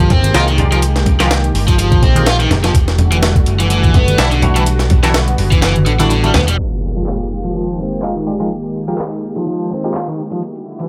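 A raw, energetic breakbeat excerpt opens with a gritty, pitched-up sampler-style break with a thumpy kick and high-tuned snare, up-front picked electric bass, an overdriven garage guitar riff through digital delay, a lush, warbling unison pad pumping on sustained chords, and a faint layered electronic kit of handclaps and metallic hats, soon joined by soft-handed congas in the background and a nasal, band-passed chord stab with phaser and vintage 12-bit grit, until the break, bass and congas stop around 6.6 seconds as an up-front electronic impact lands and a filter sweep carries the pad, guitar and clap-and-hat kit to the close.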